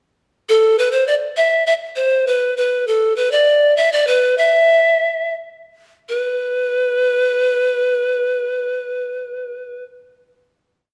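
In a straight 2/4 feel, this short, earthy and wistful Andean folk piece is a solo for close-miked, up-front bamboo pan flute, which enters at 0.5 s with a pickup and carries motif-based song phrases in a breathy, bright, reedy tone marked by tongued chiff and vibrato, slowing from 3.5 s before arriving on a final note at 6.1 s within a moderate recital-hall reverb.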